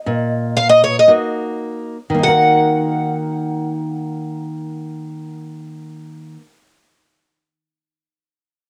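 Longing and mournful, this short fragment of a fado-style ballad unfolds in Eb minor at a loose, rubato pace of roughly 52-64 BPM in 4/4, easing into a slowdown over its opening 2.2 seconds. A picked twelve-string acoustic guitar carries the melody from the very start, its bright, shimmering, octave-doubled tone sitting up front with a boxy, parlour character and the grain of cassette tape. A fingerpicked nylon-string guitar enters at 0.1 seconds with accompaniment in a classical vein, its tone warm and also placed up front, sitting beneath the lead at a lower level. The melody stays within a narrow upper range while the accompaniment spans a much deeper register, and the harmony rests on Ebm. A moderate booth ambience and the intimacy of a home cassette recording give the whole piece a close, private feel before it breaks off at 6.5 seconds, cut from a longer performance.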